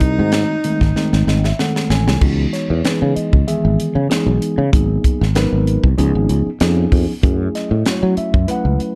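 Swung sixteenths in 4/4 drive this intense, nocturnal electric jazz fusion fragment, cut from a longer piece, where a crisp, airy drum kit with a high-tuned snare and tight kick sits up front beside a growly, punchy fretless bass. A clear alto saxophone, with vibrato, subtone and scooped notes under a slapback echo, sounds only until 1.6 seconds, while a mellow, clean tine electric piano heard through its built-in speakers joins the drums in a fill from 1.0 to 2.2 seconds. The harmony then moves from an opening Ab7b9 into C#m11 at 2.2 seconds, all in a dark, warm production with light reverb.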